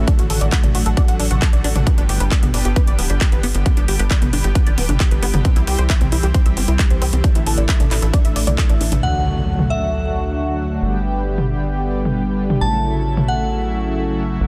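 A punchy, up-front electronic kick drives this soaring, uplifting trance excerpt at 134 BPM in D major until 8.7 seconds, over a tight sawtooth sequencer bass, a silky, sidechain-pumped analog string pad with ensemble chorus, detuned synth arpeggios washed in phaser and digital delay, and a layered big-room kit of metallic hats, handclaps, toms and crash under a low-pass filter, before a background impact at 9.0 seconds ushers in a glassy, crystalline FM bell line with 12-bit grit inside a dense, heavily limited digital ambience.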